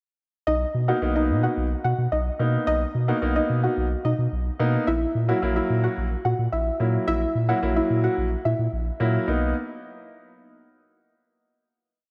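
A moderate echo-chamber reverb gives this carefree, euphoric dance-pop piece in B major at 109 BPM a roomy sheen, as its brief verse moves from Bmaj7 to F#7/A# before resting on a final Bmaj7 chord at 9.3 seconds. A deep, thick, saturated sub bass enters up front at 0.5 seconds with an octave bass line, and a polished grand piano soon joins with syncopated chord stabs in close voicing. Carrying the melody is a soft, round pluck with a dark, wave-folded tone, chorus and slapback echo, repeating an instrumental hook doubled in octaves until 8.6 seconds.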